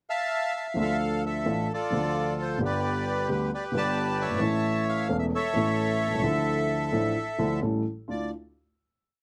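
A reedy bandoneon opens the piece at 0.1 s, stating a motif-based melody in sentence-like phrases over a brief pickup, with a dark upright piano joining at 0.7 s. This short, complete tango in D dorian moves at 131 BPM in 4/4 with a rubato feel, and its mood is tense and melancholic. The piano's accompaniment sounds mellow and woody, with long sustain, and carries the tango rhythm of uneven groups of three and two eighths. Both instruments sit up front, and the harmony passes through Dmadd9, G, A and A7 before settling on a final Dmadd9 chord at 8.1 s. Close, detailed microphones and light reverb give the sound an intimate presence.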